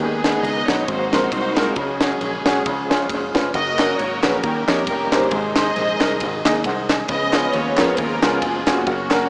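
Reverent and hopeful, this uptempo gospel excerpt moves at 135 BPM in 4/4 with a swung eighth-note feel, as a lush, bowed string section carries the melody up front over a clear, short-sustain baby grand piano, both trailing dub echo. A reedy tonewheel organ with key click, fast rotary speaker and chorus vibrato holds sustained chords in the background, while a foam-muted fingered electric bass and a punchy, airy fusion kit of kick, ride and high-tuned snare drive the groove, with very quiet, close, dry group handclaps joining at 3.8 seconds. The echo-heavy mix sits in an echo chamber reverb with a small-speaker sound and faint mains hum, as chords move from G#m/D# through C#sus4 and D#7 to C#7.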